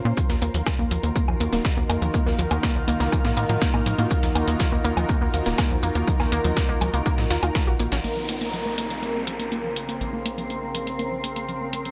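Bright, 1980s-style digital production bathed in a lush hall reverb gives this dark, cinematic melodic techno cut in Bb minor a polished sheen at 122 BPM, with the pads, pluck, bass and sampler kit pumping against an up-front, heavy, tape-warm electronic kick and warm electronic hi-hat and woodblock. A tight, saturated, wave-folded sequencer bass drives beneath a warbling, lo-fi pluck arpeggio that carries chorus, digital delay and a filter sweep. Meanwhile an evolving, phased wavetable pad sits in the background and a blurred granular cloud pad joins it on Ebmadd9, together with a gritty, overdriven sampler-style kit with snare, hi-hat and shaker. The kick falls away at 7.6 seconds and the kit at 8.0, when the harmony shifts to Bbmadd9 and an electronic downlifter slides in over the pads, pluck, bass and hats.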